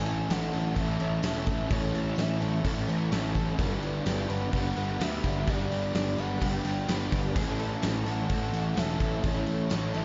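A straight 4/4 pulse enters at 0.1 seconds, driven by a huge arena drum kit with a punchy kick, fat snare and bright crash cymbals sitting up front in a big, natural room, alongside a very quiet, jingly tambourine. This wistful, dreamy shoegaze and dream pop rock passage, cut from a longer piece, rests on a growly, fuzz-drenched electric bass and two overdriven guitar riffs: a crunchy one with subtle chorus tucked into the background, and a hollow-bodied semi-hollow guitar colored by reverse reverb. A plugged-in twelve-string acoustic guitar picks shimmering, octave-doubled arpeggios very quietly, with audible finger squeak. Above it, a smooth, gliding portamento lead with a soft attack, vibrato, chorus and analog delay carries the melody, while an icy, crystalline glass pad fades in at 0.2 seconds with airy, detuned sustained chords. The harmony moves from Amaj7 to Gmaj7 and back, and the production stays dark and warm, with light studio reverb.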